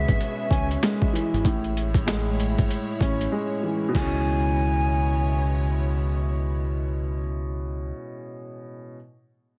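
A swung 96 BPM boom-bap groove in 4/4 opens this fragment of a longer hip-hop piece, with a gritty, overdriven sampler-style kit putting a thumpy kick and a medium-tuned snare up front alongside hi-hat and crash, until the drums drop out at 4.1 seconds. Beneath them, a deep dub fingered electric bass sits dark, round and punchy in the low register, moving over C#m7 and Amaj7 chords in C# minor, while a woody upright piano with cassette-tape colour carries the accompaniment through to 9.0 seconds. A breathy jazz flute sings a short, unsteady melody with vibrato and a soft attack, its lifted highs touched by digital delay, before falling silent at 5.8 seconds. Behind it all, a lush studio string section holds intimate, bowed sul tasto chords with a smooth top. The mood is tough yet reflective, heard through a small room and a heavily compressed, radio-like sound, with a brief silent gap just before the music moves back to C#m7.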